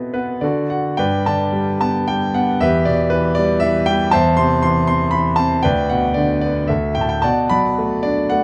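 A clear concert grand piano plays alone in this brief classical fragment, its deep bass and long sustain set up front in a close, detailed recording with light reverb. A short opening fill gives way at 1.0 seconds to a lyrical, rubato passage in G major and 3/4 at roughly 104-122 BPM, spanning D2 to C6. The mood is moody and cool, with harmonies moving from Gadd9 through Em and Amadd9/E to D6, Dsus2 and a closing Bm7.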